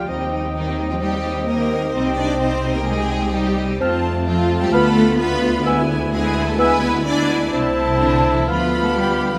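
Lively and spirited, this quick classical-period orchestral passage, cut from a longer piece, sets a rich, vibrato-laden violin section on the melody over a second line shared by an airy flute section, a studio violin section and a distant, roomy oboe, while a clear background viola section and a mellow solo bassoon fill in the accompaniment, a tight French horn section holds sustained chords, and an intense double bass section joins a close, smooth cello section on the bass, the ensemble sitting in a moderate scoring-stage reverb.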